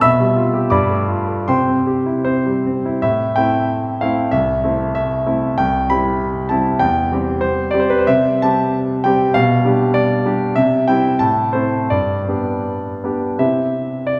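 This is a romantic classical character piece for solo piano, cut from a longer work, with a passionate, lyrical mood. A clear concert grand carries everything alone from 0.0 to 14.2 s, set in 2/4 with a free, rubato feel that drifts between 74 and 100 BPM. Its tone is polished and present, sitting up front with a deep bass and short sustain, while the playing ranges from C2 up to E6. The harmony opens in C major, turns toward A minor at 3.0 s, and settles back into C major from 8.1 s before closing on a C chord at 13.4 s. A wet church reverb with a long tail surrounds the piano, giving it the airy depth of a large hall.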